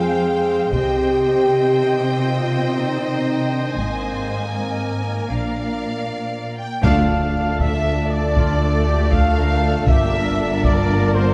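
Epic and relentless, this cinematic orchestral cue is cut from a longer piece and moves at 79 BPM in a straight 12/8, opening in C minor before shifting to D minor at 6.8 seconds. Two violin sections carry the melody and a second line with expressive vibrato and portamento, the lead sounding lush and close. Beneath them, a rich, distant viola section plays accompaniment, while a mellow French horn section and a very quiet, vintage-tinged trombone section hold sustained chords. A soft-attacked cello section and a smooth, even double bass section, which enters at 0.7 seconds, anchor the bass, and a taiko ensemble struck with heavy sticks pounds briefly near the start. Just before the change, at 6.6 seconds, a trumpet section enters with clear stabs and a pure, hollow flute section joins very quietly. At 6.8 seconds the whole band accents the change: the taiko return, timpani sound briefly, a huge, bright impact rings out in the background, and a focused string section fills out the sustained chords from further back. 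The production is dark, set in a wet scoring-stage reverb.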